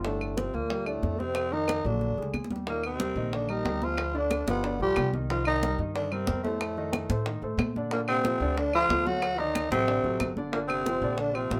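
A short-sustained grand piano, thumpy pizzicato upright bass and tight, high-tuned bongos open this sophisticated, driving Afro-Cuban jazz excerpt at 183 BPM in G minor, joined almost at once by ringing congas, dry woody claves, a gritty, growling tenor saxophone carrying the melody up front and a mellow, breathy trombone on a second line, both horns sounding roomy in a small-room ambience, with a fill at 2.0 seconds leading into a longer passage that moves from Ebmaj7 through Cm7 and Bbmaj9 to Gm7.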